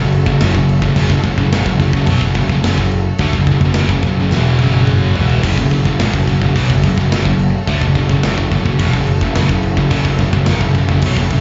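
A scooped, double-tracked high-gain guitar riff, a growly fuzz-overdriven bass and a clear bowed string section in the background holding sustained F# minor chords open this relentless, epic heavy metal excerpt at 107 BPM, joined at 0.1 seconds by a tight acoustic drum kit with crash, kick, snare and toms that plays a fill from 4.3 to 5.4 seconds before the riff repeats, all heard as a live club gig through the venue's PA with a dull, rolled-off top.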